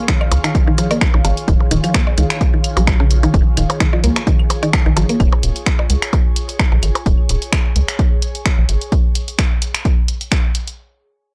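Clinical and hypnotic, this short cut from a longer minimal techno track sits at 129 BPM in 4/4 with a light swing on the sixteenths, opening straight into a drop where a punchy, tape-warm kick and a rubbery, hollow square bass lead the mix, both the bass and a woody, mallet-like FM pluck riff pumping against the kick, the pluck carrying tape echo. A punchy analog drum machine with finger snaps and hi-hat, re-recorded in a large room, joins blips and claves run through analog delay, while an airy, breathy pad with phaser and a very quiet bubbling texture of random filter steps float behind. The sound is dry and gritty, with the pluck dropping out around 5.1 seconds, the percussion around 7 seconds and the bass by about 8.8 seconds, and the drum machine running to 10.8 seconds.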